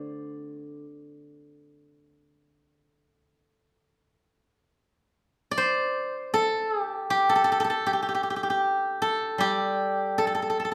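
Rubato and unevenly paced around 77 BPM in 4/4, this brief, elegant and pastoral Chinese traditional passage, cut from a longer piece, features a solo acoustic steel-string zither played with fingerpicks from 0.0 to 10.7 seconds. Its silvery, ringing tone sits up front and spans D3 to D5, carried by a moderate recital-hall reverb.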